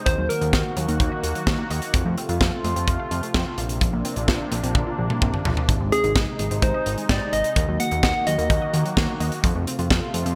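A gentle, round FM synth lead and an evolving, airy sawtooth pad open this wistful, nostalgic synth-pop fragment, joined almost at once by a lush, detuned unison pluck playing arpeggios in the background, a fat, saturated analog bass and a punchy, polished studio drum kit with a high-tuned snare; the drums take a fill at 4.8 seconds before the warbling, vintage lead returns with its melody at 5.9 seconds, within a bright 1980s-style digital production and moderate plate reverb.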